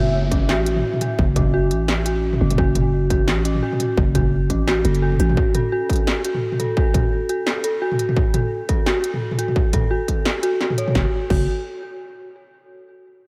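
Light reverb gives this heavy, tense half-time drum and bass passage, cut from a longer piece, a close and slightly roomy sound at 172 BPM in F# minor, with a 16th-note swing over an F# minor chord that holds until 11.0 seconds. An eerie, detuned FM synth bell plays arpeggios throughout, its inharmonic, warbling vintage tone softened by chorus, a low-pass filter and delay. A growling, buzzy 808-style bass sits up front underneath, drops out at 5.4 seconds and returns briefly at 11.0 seconds. The drums arrive at 0.3 seconds: a distorted, overdriven electronic kick and an industrial kit with a clanging snare, crisp hi-hats, crash cymbal and toms, both re-recorded in a small room. In the background, an electronic downlifter sweeps through the opening moments.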